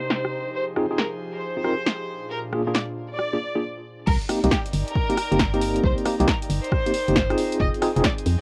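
Late-night and skippy, this two-step UK garage cut from a longer piece moves at 136 BPM in C minor with a strong 16th-note swing. A reedy, gut-toned chamber violin section carries the melody over an airy, breathy pad with chorus and sidechain pumping, while a worn, slightly out-of-tune tine electric piano with medium tremolo plays stabs and a punchy analog drum machine supplies crash, hi-hat, rim click and snare. After a brief stop at 3.6 seconds, the drop lands at 4.1 seconds, where a hollow, organ-like FM bass and a tape-warm electronic kick drum join as the chords move from Fm7 and Bb7 to Cm7, all set in light reverb with a low-pass, home-cassette character and tape echo on the violins.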